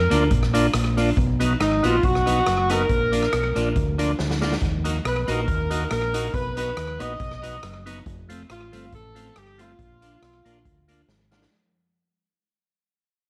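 A lightly swung ska groove at 139 BPM in 4/4 drives this mischievous, energetic fragment of a longer piece. It fades throughout as a punchy, up-front horn section with light vibrato carries the melody over a dark, round fingered bass with transformer saturation. A clean picked electric guitar with slapback echo, percussive tonewheel organ stabs with key click and slow rotary speaker, a street-band drum kit with a boomy kick and slapback echo, and a jingly tambourine set back in the mix fill out the sound, with drum fills at 4.2 and 11.1 seconds and a moderate plate reverb with small room ambience surrounding the mix.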